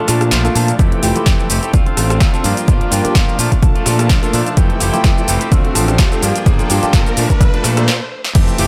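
Filtered disco house at 127 BPM with a light swing and a feel-good, sunny mood, this short build-up cut from a longer piece cycles through Bbmaj7, Fmaj9, Dm7 and Gm7 as a bell-like tine electric piano with phaser and 12-bit sampler grit, a clean, picked semi-hollow electric guitar riff and a fuzz-laden fingered bass all pump against the sidechain under a low-pass filter, with a very quiet, biting chamber violin section holding sustained chords above. A punchy analog drum machine with overdriven snare, hi-hat, rim click, shaker and crash is joined at 0.8 s by an up-front overdriven electronic kick, while a background riser climbs from 3.6 s. The groove stops at 7.9 s for a drum fill, all set in light digital ambience.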